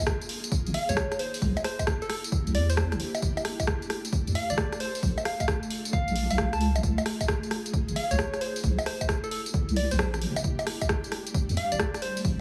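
An ethereal, airy pad of sustained chords with ensemble chorus, tremolo and sidechain pumping opens this sunny, soulful two-step UK garage excerpt, joined at 0.1 s by a punchy, tape-warm electronic kick and an up-front analog drum machine of bongos, hi-hat, rim click and tambourine swung on the sixteenths, then at 0.7 s by a deep, dark wobbling bass with chorus and a round, gentle, keys-like synth lead whose warbling vintage tone carries chorus and tape echo, over a Db, C7, F69 and Bbmaj7 progression, the mix heavily compressed into a radio-like sound with moderate plate reverb.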